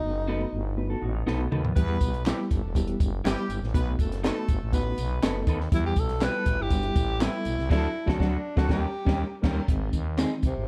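A breathy, whispered tenor saxophone carries the melody in this joyful, uptempo 1960s-style soul excerpt, with soft attacks, scooped notes and vibrato that give it an intimate jazz feel. It speaks briefly at the start, then returns at 5.7 seconds to lead to the end. Underneath, a growling, thick FM bass sits up front, while a mellow, reedy electric piano with fast tremolo supplies the accompaniment throughout. A slightly broken-up, lo-fi electric guitar adds picked stabs in the background, and a dark, clean second guitar plays a fingered riff. The compact cocktail drum kit, with its high-tuned snare, tight kick and rolled-off top, enters with a fill at 1.3 seconds, and a warm horn section carries a second line from 1.8 seconds, joined by vintage, band-limited tambourine and handclaps. The dark, dry production keeps the sound close, and the band hits a shared accent near the end of the passage.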